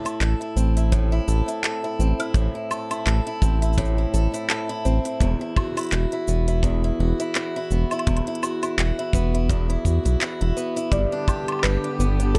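A round, deep analog bass sits up front with tube saturation under a bright, boxy picked acoustic guitar playing swung arpeggios through delay and plate reverb, while an organic electronic kit of crisp hi-hat, handclaps, shaker and woodblock joins with a tight, airy kick in this warm, delicate folktronica excerpt at 84 BPM with a 16th-note swing. The harmony moves from Am to Esus2 and then to G at 10.9 seconds, where a felt-muted upright piano enters with a soft, intimate melody, its action noise audible through plate reverb, over veiled con sordino sustained chords from a muted string quartet. The production is dark with light reverb.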